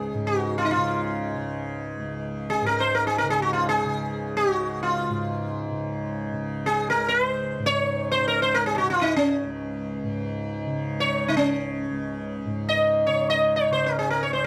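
Hindustani classical music in free time, this devotional, meditative 14.5-second excerpt sets a bright, buzzing, plectrum-plucked sitar melody in Db raga bilaval, its sympathetic strings adding a shimmering halo. Beneath it, a softly plucked tanpura sustains a warm low drone throughout. Both instruments sit up front in a dry, close 1970s-style studio sound with little reverb.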